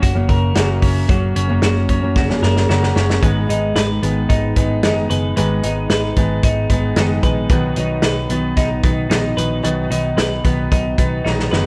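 Worn, warbling old cassette tape with little reverb colours this youthful, breezy jangly indie pop passage, where a bright, twangy twelve-string electric guitar plays compressed arpeggios with slapback echo up front over a full-bodied fingerpicked jumbo acoustic guitar, a dark, round foam-muted picked bass and a punchy small-room vintage drum kit whose fills arrive at 2.2 and 11.2 seconds as the chords move from F# to G#m and B.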